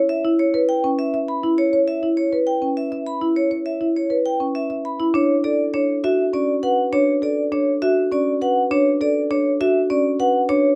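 Classical minimalist pattern music in 3/4 with a straight, hypnotic and bright feel, heard as a short cut from a longer piece. A marimba played with medium mallets carries arpeggios through the whole passage, its tone warm and up front. From 0.1 seconds a vibraphone with medium hard mallets sings the melody above it, metallic and ringing, with a medium motor vibrato that gives its notes a gentle shimmer. The passage falls into two sections, the second arriving at 5.1 seconds on a Dmaj7 chord. The sound is close and detailed with little reverb, so both mallet instruments sit near the listener with clear attacks.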